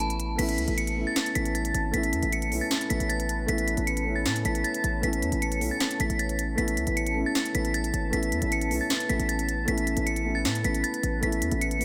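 A half-time trap groove in 4/4 drives this hip hop passage, cut from a longer piece, with an electronic drum kit up front pairing a sharp snare and crisp hi-hats with crash cymbal. Beneath it, a hard-hitting 808-style bass delivers punchy, heavy sine tones with a noise layer and a fast, decaying attack, sitting slightly louder than the other parts. Over the top, a metallic FM bell carries the melody high in its register, its inharmonic, ringing, vintage tone warbling through chorus and phaser and lingering on a long release. A mellow, boxy concert grand piano with deep bass supplies accompaniment in the middle range, and at 0.4 s a moody, detuned analog pad of sawtooth and triangle waves with a sub octave enters with a slow attack, holding sustained chords on an Aadd9 harmony through its own chorus and phaser. Light reverb frames the mix, and the mood balances triumphant and wistful.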